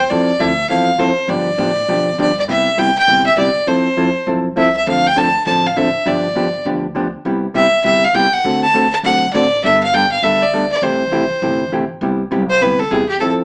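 Swinging and playful, this short western swing snippet puts a rich, biting fiddle with light vibrato up front on the melody beside a dark, clean hollow-body electric guitar, while a woody, thumpy plucked upright bass sits in the background of a live one-room sound, with the fiddle stepping out for a solo at 12.0 seconds.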